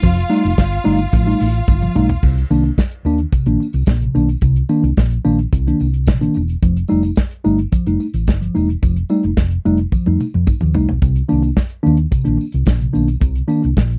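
This disco excerpt at 109 BPM in C dorian opens with a bright, lush studio string section, bowed with vibrato, carrying a second line over an F9 chord for the first 2.2 seconds before it drops out. Underneath, a mellow tine electric piano sits up front in a clean accompaniment role, sounding through its built-in speakers, while a hollow-body short-scale bass, fingered and amped, lays down a round, dark low end. A soul drum kit with a tight kick, medium-tuned snare, dark cymbals and a rolled-off top drives the straight 4/4 groove, with drum fills at 1.7 and 9.9 seconds. A jingly tambourine adds a faint, close sparkle in the background. The harmony sways between Cm7 and F9, giving the sultry, driving mood a steady pulse, and the whole take has a dry, close 1970s studio sound with little reverb.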